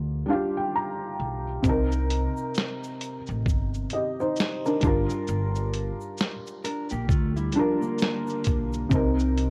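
Cassette tape colour and a light small-room reverb frame this hazy, nostalgic lo-fi hip hop excerpt with a gently swung feel, where a boxy felt-muted upright piano with audible action noise opens with a fill over woody pizzicato upright bass, a gritty sampler-style drum kit with a thumpy kick and a faint, grainy tube shaker both enter at 1.6 seconds, and a clean, dark electric guitar with analog delay adds a second line from 6.6 seconds.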